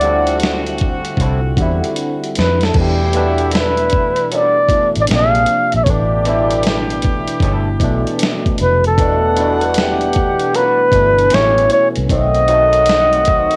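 This smooth, introspective neo-soul and R&B excerpt features a breathy, whispered flugelhorn carrying the melody up front, its soft attack and gentle vibrato set over a barky tine electric piano colored by phaser. It moves at a relaxed 77 BPM in 4/4 with a swung sixteenth feel, in E minor. A dusty, sampler-style drum kit, gritty and compressed, brings a thumpy kick, medium-tuned snare, hi-hat and crash, with a fill from 2.0 to 2.7 seconds. Beneath it, a dark, round, foam-muted fingered electric bass holds the low end. Further back, an electric guitar through a small old amp adds a slightly broken-up second line with subtle chorus until 12.9 seconds, and a clear, distant horn section punctuates with tight stabs. The harmony moves through chords such as Em9, A7sus4 and a closing B7b9, while cassette tape coloring on the horns, guitar, keys and drums and a modest booth ambience give the track a homemade, intimate character.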